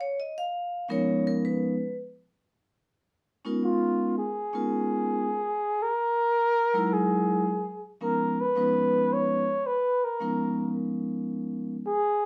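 A breathy, mellow flugelhorn with light vibrato enters up front at 3.6 seconds to carry the solo melody over a ringing, metallic vibraphone played with medium mallets and its motor off, which has comped alone from the start over Db13 and Gb13 chords until it stops at 11.8 seconds, in this warm, swinging jazz fragment at 110 BPM in Db mixolydian, set in a small, wet room heard from further back.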